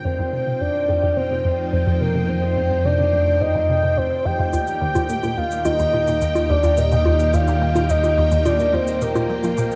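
Through a dark wash of plate reverb, this hypnotic, cosmic stretch of sequencer-driven space music sets a round, octave-layered synth lead singing over lush string-machine chords that fade in, a juicy, squelchy blip pluck riff, a mellow evolving analog drone entering at 0.8 s, a bright bubbling stepped-filter texture, and tape-echoed bongos and shaker arriving at 4.5 s.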